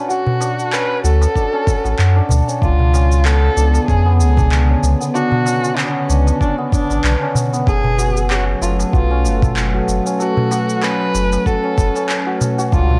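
A lightly swung 95 BPM groove in 4/4 drives this meditative, earthy slice of organic downtempo, built from a thumpy, gritty, overdriven electronic kick, overdriven electronic shaker and handclaps, a crisp, close metal-shell darbuka and a deep, round sine sub bass that sits up front from 1.0 seconds. Over Dmaj7, C#7(no3) and F#m, a shimmering hammered santur plays arpeggios through a low-pass filter and tape echo, while a smooth bowed kamancheh carries the melody with vibrato, portamento and delay. From 3.5 seconds a warbling, nostalgic lo-fi pad adds sustained detuned chords with chorus, reverb and sidechain pumping, all within a dark, warm production in a small room.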